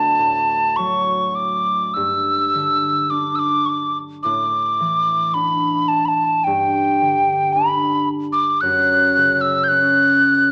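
An airy, hollow metal tin whistle sits up front with tongued chiff, vibrato and lifted highs, carrying the melody of this wistful, tender Celtic slow air at 51-57 BPM in a free rubato 4/4, while a mellow, fingerpicked concert harp rings out a lower accompaniment through a moderate recital-hall reverb with a small-speaker sound, in a short passage cut from a longer piece.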